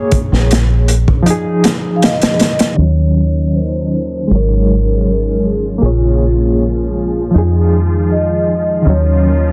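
A slow, straight 4/4 trip hop groove at 79 BPM opens with a barky, lightly overdriven reed electric piano with fast tremolo, tape echo and a filter sweep. It is joined almost at once by a crunchy, saturated breakbeat kit, whose kick drops out at 1.3 seconds before the drums stop at 2.8 seconds, and by a round, foam-muted dub bass, together setting a dark, brooding mood in Eb minor. From 2.0 seconds a mellow vibraphone played with soft mallets carries the melody through tape echo. It is then joined in the background by string-machine cellos with phaser, ensemble chorus and 12-bit grit, and by a faint reversed, granular swelling texture, over chords that move through Ebm7, Ab7sus4, Bbm7 and Fm7. The dense, heavily limited master adds vinyl crackle and light reverb to this fragment of a longer piece.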